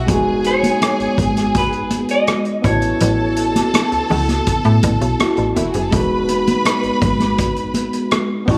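Romantic and warm, this short slice of lush 1970s-style soul moves at an easy, straight four-beat pace over a gentle change from Emaj7 to A6 and back. An overdriven tine electric piano sits up front with a gritty combo-amp edge and a phaser, while a slap-like FM bass adds a snappy, metallic attack that then decays. A vintage acoustic drum kit with a punchy kick, hi-hat and rim click keeps time alongside bright, high-tuned congas that stay close, dry and in the background. A clear, bowed string section carries a smooth second line with vibrato and a touch of slapback echo. From 0.5 to 4.1 seconds, an electric guitar through a small old amp picks a dark, slightly broken-up melody before falling away, all set in light reverb and a small-room ambience.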